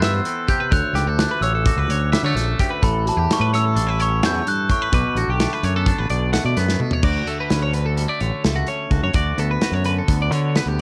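Math rock and midwest emo in a bright, playful 9/8 at 256 BPM, this dry excerpt sets a bell-like glockenspiel melody with slapback echo, which rings out only until 5.8 s, over a clean, twangy electric guitar, bright compressed twelve-string arpeggios, a punchy, overdriven fingered bass sitting up front, and a loose, small-room indie drum kit with dark cymbals and a tight kick, whose fill at 6.7 s leads into a new section as the chords move from Cmaj7 through Dmaj7, A7 and Bm7 to a rootless Gmaj7/D.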